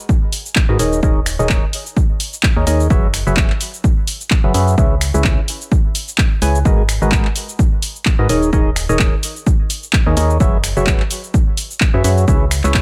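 Energetic and soulful, this piano house cut, taken from a longer piece, moves at 128 BPM in 4/4 with a light swing on the sixteenths. A punchy electronic kick sits up front from the first moment, joined by an analog drum machine carrying cabasa, finger snaps, handclaps and hi-hat, both with a tape-warm character as if re-recorded in a small room. At 0.7 seconds a percussive organ stab takes the riff, its hollow, mellow tone built from sine and triangle waves with a noise layer and wave-folding, treated with chorus, phaser, digital delay and sidechain pumping, and placed up front. Underneath, a dark, organ-like FM bass with a fast attack and decaying notes pumps against the kick as it moves through the low register. The harmony cycles through G#m9, D#7sus4, F#9sus4 and C#m7 twice, and the whole passage stays dry with little reverb.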